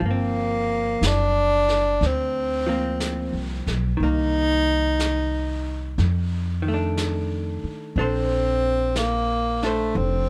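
Jazz ballad at a slow 60 BPM with a late-night, tender swing, where a breathy, close-miked tenor saxophone sings scooped, soft-attack notes up front over a woody, growly pizzicato upright bass, a dark, clean, compressed hollow-body electric guitar comping through Gm7, Cm7, F6 and Bbmaj9, and a vintage brush kit with a rolled-off top on snare and hi-hat, all in a dry, intimate room.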